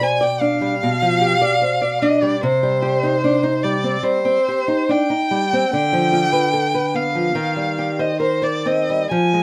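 A rich, bowed solo violin sings a yearning, elegiac melody with expressive vibrato and portamento over a small, warm, fingerpicked nylon-string guitar in this rubato romantic duo excerpt, both parts held up front in light reverb as the harmony moves from G7/B to Cm, Bdim/D and Cm/Eb.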